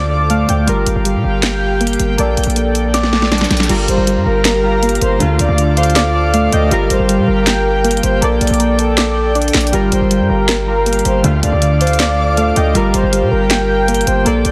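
Hip hop in a trap style, this brooding, menacing excerpt moves at 159 BPM in 4/4 with a half-time feel, in G minor and tuned slightly flat to A4 = 438 Hz. From the start, soft electric-piano-like synth keys play round, dark arpeggios through chorus, phaser and delay. Warbling lo-fi synth keys with a nostalgic, vintage tone supply accompaniment, and an airy pad holds mellow sustained chords above. A hard-hitting 808-style bass sits up front, punchy with a fast attack, and the electronic trap kit enters at 0.3 seconds with a sharp snare, bright hi-hats, handclaps and crash cymbal, adding a drum fill before the second section begins at 3.7 seconds. A breathy, flute-like synth lead comes in at 3.9 seconds as a second line, colored by tremolo, vibrato and delay, while the harmony circles Dm, Gm7 and Bbmaj7 in a dry, dense, heavily limited master.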